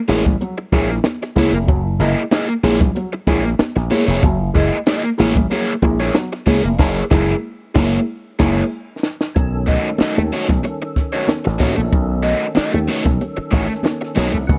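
A straight 4/4 funk groove at 94 BPM drives this gritty, energetic clip, cut from a longer piece, with a compact cocktail drum kit up front: a tight kick, a high-tuned snare, hi-hat and crash cymbal, all with a dark, rolled-off top. A slap bass run through an envelope filter sits just as close, growly and punchy. Congas ring softly in the background with high-tuned, close and dry hand sounds. A crunchy overdriven guitar with a phaser plays the accompaniment over an F#9 chord, while a dark, woody, slightly detuned upright piano adds boxy stabs until 8.6 seconds. The band hits an accent from 6.8 seconds, and a drum fill leads into a move to B9 at 9.4 seconds. Just before, at 9.3 seconds, a percussive tonewheel organ joins with fat, clean sustained chords, key click, chorus vibrato and a slow rotary speaker, all inside a small room ambience that gives the whole a dry, close 1970s studio sound.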